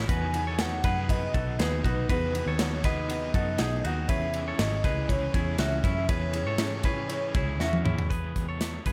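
A punchy, up-front studio drum kit with gated reverb and a pumping room sound drives this youthful, breezy stretch of jangly indie pop at 120 BPM in 4/4, cut from a longer piece, and it closes with a fill from 7.6 to 8.1 seconds. Above it floats a warbling, nostalgic synth lead with vibrato and chorus, supported by a round, foam-muted picked bass, a twangy, compressed clean electric guitar playing arpeggios with a slight pitch drift, and a raw overdriven garage guitar with tremolo sitting in the background. A worn, woody, slightly detuned upright piano fills out the accompaniment, while a very quiet, full-bodied string-machine viola pad adds mellow sustained chords over a move from B to C#m, all in a dry sound.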